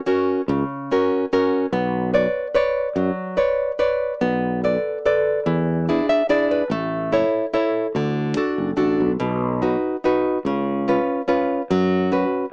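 A fingerpicked nylon-string guitar opens at 0.1 s, bright and small-bodied, sitting up front as it sets out the accompaniment for this passionate, wistful Italian folk serenade in B minor. At 0.5 s a sustaining fretless electric bass joins, direct and growly, holding the low end just as close to the listener. The waltz-time metre moves at 145 BPM with a straight feel. After an opening built around F# and Bmadd9, the second section begins at 4.2 s and travels through Bm7, E7, A, D, B and C#7 before coming to rest on F#sus4. The guitar adds a short fill at 5.9 s. The recording carries light reverb and a small-speaker sound, and it is cut from a longer piece.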